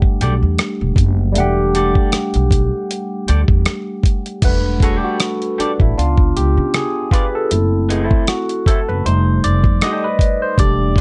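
A loose 16th-note swing in 4/4 sets a smooth, introspective neo-soul and R&B groove, carried by a dusty, compressed sampler-style drum kit (thumpy kick, hi-hat, rim click and crash cymbal) up front beside a woody pizzicato upright bass. A barky, lightly overdriven tine electric piano with phaser accompanies from the start and takes a solo from 4.4 s, while a twangy, slightly broken-up electric guitar through a small old amp adds a lo-fi second line. The dry fragment, cut from a longer piece, moves from Em11 through C#7b9 and F#m7b5 to F9.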